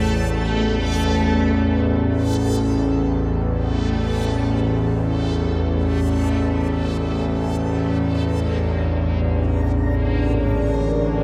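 Drenched in a cavernous cathedral reverb, this desolate, ominous dark ambient drone, cut from a longer piece, drifts in free time from an A chord to Bb/A at 7.4 seconds; an up-front, tense, string-like bowed drone with ring modulation and vibrato anchors it, a very quiet, detuned analog pad with chorus shadows it, a bright, reversed granular texture fades out across it, and very quiet, bronze gamelan-type bossed gongs with a metallic beating tone in a boxy small room enter at 10.3 seconds.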